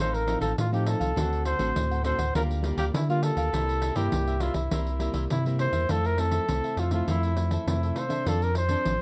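A mellow trumpet with light vibrato and scooped, jazz-style notes carries the solo melody up front over crisp, picked cavaquinho in the background, fingerpicked classical nylon-string guitar and a deep, full sub bass with octave, joined at 0.1 seconds by jingly pandeiro, in this sunny, lively samba and choro excerpt in F major at 102 BPM, captured close and detailed with light room reverb and a plate reverb on the trumpet.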